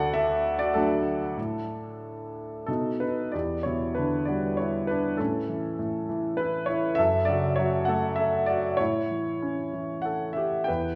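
A clear, present grand piano plays alone and up front in this lyrical classical fragment cut from a longer piece. Its long sustain rings from D2 to G5 in a moody, cool 3/4, with rubato drifting between 87 and 102 BPM and tuning set to A4 = 442 Hz. The opening passage moves from D through Asus4 to B7, and at 3.3 s a second section begins on Em7 before passing through A and F#m and returning to A at 8.8 s, all wrapped in a wet recital-hall reverb with a 1.5-second decay that gives the sound the bloom of a church or concert hall.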